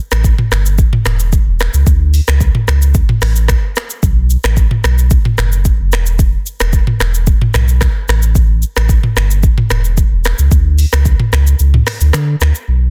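Set in a digital ambience, this excerpt has a dense, heavily limited modern master. It is a mellow, sultry afrobeats groove at 111 BPM in a straight 4/4, tuned slightly flat to A4 = 439 Hz. A round, sine-like sub bass sits up front from 0.1 seconds, ranging from E1 to D3 with a fast attack and long, sustained notes that feel deep and warm. Alongside it, an electronic afro-pop drum kit blends a deep kick, dark hi-hats, finger snaps, rim clicks, shaker and toms, with soft clipping giving the snare a gritty edge. The kit drops its kick at 11.6 seconds, and the drums stop at 12.7 seconds while the bass carries on a moment longer.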